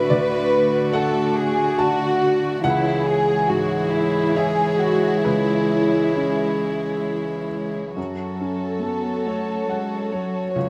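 In a rubato 3/4 at roughly 66-72 BPM, this fragile, longing neoclassical piece for piano and strings in F# minor puts a dark, up-front violin section on the melody, bowed sul tasto with light vibrato and a soft attack, over a woody solo cello second line and a clear, boxy upright piano with audible action noise. A single airy-bowed viola adds accompaniment until 7.8 s, both it and the piano carrying a slapback echo, while a warm chamber string section holds sustained chords beneath. The harmony moves from D6 to C#m7 and arrives on F#m at 8.0 s, set in a light reverb from an outdoor recording.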